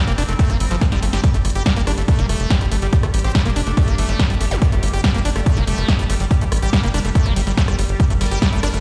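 A bare, stone-walled reverb surrounds this hypnotic, alien psychedelic trance cut, which sounds as if it were played through a big sound system and taken from a longer piece. At 142 BPM in a straight 4/4 in G minor, a heavy, up-front electronic kick drives the groove alongside a tight, punchy sawtooth sequencer bass with a plucky filter. A layered techno kit of hi-hat, ride, rim click and a punchy snare, tape-warm and re-recorded in a small room, adds a drum fill around 0.8 seconds. A squelchy, resonant liquid acid bass riff with filter sweeps is bright and chorused, pumping to the sidechain and trailing dub echo. A pulsing, detuned gated pad holds sustained chords with a soft attack in the background. Briefly from 3.2 seconds a saturated, metallic FM wobble bass wavers behind the mix through tape echo, and a small electronic zap flickers at 4.5 seconds.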